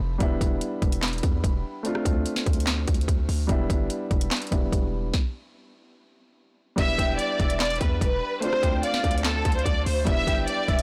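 Blown-out, overdriven and nearly dry, this menacing, dark trap excerpt moves at 146 BPM in a half-time feel in E phrygian, with a natural, deep-voiced concert grand piano and a punchy, heavy 808-style bass beneath an up-front trap kit of hard-clipped kick, sharp snare, metallic hi-hats, handclaps and rim clicks, a stop arriving at 5.1 seconds before a lush bowed violin section with vibrato and tape echo enters at 6.8 seconds, joined at 7.0 seconds by a velvety, detuned synth lead with chorus and tape echo sitting in the background.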